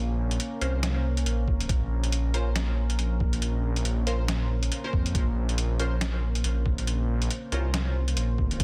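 A dense, heavily limited mix with light reverb opens this dark, meditative deep dubstep excerpt, set at 139 BPM in Bb minor with a half-time feel and a swung sixteenth pulse. A deep detuned saw bass sits up front from the start, rumbling and beating as it sustains beneath a moody ambient pad whose slow-attack chords of sawtooth and sub-octave layers are bathed in chorus and built-in reverb, resting on a Bbmadd9 harmony. Sampler-style trip hop drums enter at 0.3 seconds, their pitched-down, muffled hi-hat and medium-tuned snare overdriven and carrying the grit of a small room. A muted, filtered dub chord stab joins at 0.6 seconds, its plucky, decaying sawtooth and square tones smeared through phaser, lush chorus, cassette tape coloring and dub echo. At 1.5 seconds an overdriven, thumpy electronic kick lands up front, compressed and pitched down, anchoring the brooding groove.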